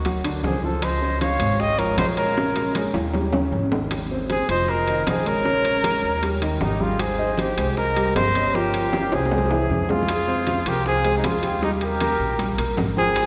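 Afro-Cuban jazz, lively and danceable, cut from a longer piece: a breathy, punchy trumpet carries the melody up front with vibrato, while a tongued concert flute with lifted highs plays an expressive second line. A warm concert grand piano with deep bass and a woody pizzicato upright bass support them, as round low-tuned bongos, bright thin-skinned congas and ringing metal-shell timbales keep the groove, with drum fills at 2.4 s and 8.9 s. The harmony turns toward a minor colour at 10.1 s, where grainy maracas join, and the whole mix sits in a wet church reverb.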